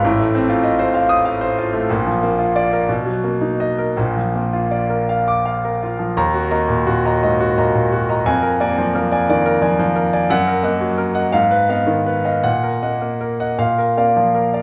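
A bright concert grand piano plays alone, up front with deep bass and long sustain, in this passionate, brooding romantic character piece in a flexible, rubato 6/8, moving through shifting harmonies before a new section turns to minor-key chords at 6.2 seconds, all in the moderate bloom of a recital hall.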